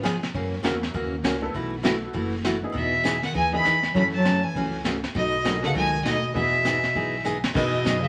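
A swung 4/4 western swing country groove, cheerful and swinging, rides a brushed kit with a high-tuned snare and a thumpy gut-string upright bass beneath a full-bodied picked dreadnought guitar and a jangly, detuned honky-tonk piano in the background, and at 2.8 s a biting, earthy fiddle with light vibrato takes the melody over a close-miked, dark bass clarinet second line, the whole set in reverberant studio space with vinyl crackle and a drum fill at 7.3 s.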